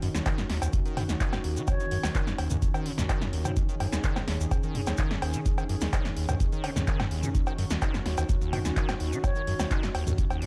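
Steeped in digital ambience, this gritty, trippy acid house excerpt rides an up-front, deep electronic kick and a punchy analog drum machine of cowbell, handclaps, hi-hat, snare drum and toms, with grainy maracas close and dry, while a squelchy, resonant sawtooth acid bass riff with overdrive and a filter sweep sits beneath a smooth, warbling, detuned analog pad bathed in lush chorus and sidechain pumping, and a distant, airy concert flute with analog delay appears briefly on Db5 at 1.7 and 9.2 seconds.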